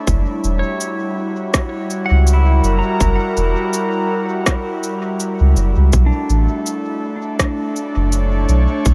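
Light reverb frames this hazy, spacious ambient dub excerpt at 82 BPM, with a deep, round sub bass and a tight, overdriven electronic kick sitting up front beneath an airy, breathy pad that holds sustained chords through chorus. An overdriven shaker and rim click, thrown into dub echo, play in a 4/4 groove swung on the sixteenths, while a clean pedal steel guitar, fingerpicked with slide and volume swells, plays tape-echoed arpeggios from 0.6 to 8.0 seconds. The harmony shifts from F#7b9 to Bm11 at 5.9 seconds.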